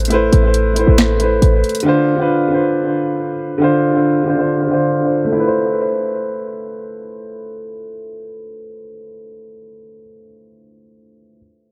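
A half-time trap pulse at 137 BPM in 4/4 opens this eerie, melancholic hip hop piece, which is cut from a longer track. A produced electronic trap kit with a sharp snare, handclaps and bright, tape-tinged hi-hats sounds only briefly, falling away by 1.9 seconds. A punchy, tight 808-style bass, a sine tone with a noise layer, fast attack and quick decay, sits up front on a low A and also drops out almost at once. What carries on is a dark, mellow concert grand piano, boxy and deep with long sustain, played up front through a low-pass filter and analog delay, with a filter sweep across its first 5.4 seconds. In A minor, its accompaniment moves from Amadd9 to Dm7 and returns to Amadd9 as a new section begins at 5.4 seconds, ringing on alone until 11.4 seconds in a light, echo-heavy small-room space.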